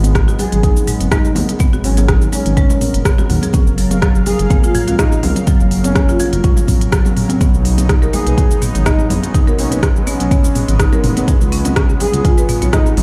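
A deep, tape-colored electronic kick sits up front at 124 BPM, driving a lightly swung afro house groove of smooth hats, rim clicks, shaker and toms from the afro-pop kit, with bright, compressed congas tucked in the background, in this spiritual excerpt in G# dorian moving from G#m11 through F#maj7 and B69 to C#7sus4. A dark, smooth sawtooth bass with vibrato and a detuned analog pad with chorus and tremolo both pump against the kick, while a woody marimba with medium hard mallets plays echoing arpeggios from 0.1 seconds. An expressive sawtooth synth lead carries the melody from 0.4 seconds, given chorus, tape echo and a gritty 12-bit sampler edge, and the whole mix rings in a large, bare-room reverb.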